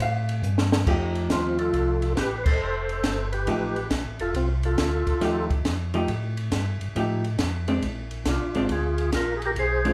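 A moderately reverberant live-in-one-room studio sound frames this bluesy, greasy soul jazz organ trio swing excerpt: a small cocktail drum kit with a punchy kick and high-tuned snare opens with a fill, a round, clean tonewheel organ carries the bass through a slow rotary speaker, a dark, compressed hollow-body jazz guitar accompanies, and a fat, lightly overdriven percussive organ with key click and chorus vibrato plays the melody from 1.3 to 5.5 seconds and again from 8.3 seconds, with a band accent along the way.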